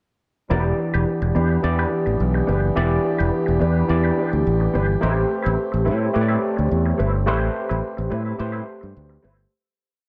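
Glamorous and celebratory, this short disco piece moves at 106 BPM in a straight 4/4, settling on an Em7 chord before shifting to Am9 at 5.0 seconds. Up front, an overdriven fingered electric bass growls through a syncopated disco line, bright and direct with an amped edge. Beside it, a barky tine electric piano runs through a combo amp with gritty overdrive and analog chorus, pushing spread chords dressed with grace notes. A dark, clean electric guitar chops out sixteenth-note disco rhythm through a wah pedal, its fingered tone compressed and mellow. Behind them, a tight French horn section holds distant, roomy pads in a classical style, and the whole groove, set in light digital ambience, fades out from 7.3 seconds to its close at 9.5.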